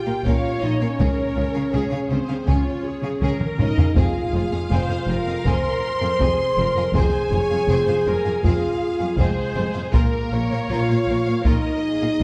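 Epic orchestral film score in F minor at 80 BPM, dark and heroic, this 12.2-second cut opens with a distant, lush symphonic violin section carrying the melody over a close viola accompaniment and a mellow French horn section holding sustained chords. A focused chamber violin section adds a second line in the background, while bowed cellos with a smooth top and a double bass section with soft, expressive attacks anchor the bass under chords moving from Bbm through Db and Fm. A taiko ensemble struck with hard sticks drives the pulse and plays a fill at 3.2 seconds, all set in a wet scoring-stage reverb with a dark, warm production.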